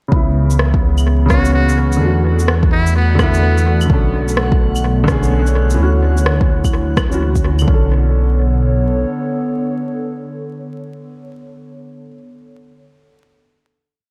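A skittering, shuffled two-step beat of muffled, overdriven electronic kick with electronic shaker, rim click and claves, swung at 63% on 16ths at 127 BPM, drives this rainy, nocturnal future garage piece in B dorian, where a woody, slightly detuned upright piano pushes syncopated chords through tape echo, a dark, rumbling sawtooth bass pumps beneath, a warbling lo-fi pad drifts with chorus, a reversed granular swell hangs high in the background, and a buzzy, breathy muted trumpet plays a brief jazz solo from 1.3 to 3.9 seconds before the groove gives way at 7.7 seconds to a final Bm9 chord in an echo-heavy mix with vinyl crackle.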